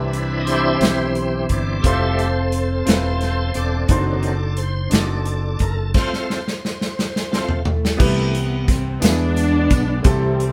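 Uplifting and jubilant, this slow gospel passage in 6/8 opens with a shouting tonewheel organ solo, its key click and slow rotary speaker up front, over woody, vintage upright piano, a round fingered electric bass and an acoustic country drum kit with a punchy kick that plays a fill from 5.9 s, before a lush, dark bowed string section takes the melody at 7.7 s and a faint, jingly tambourine joins at 8.0 s, the band heard live in one room with moderate reverb.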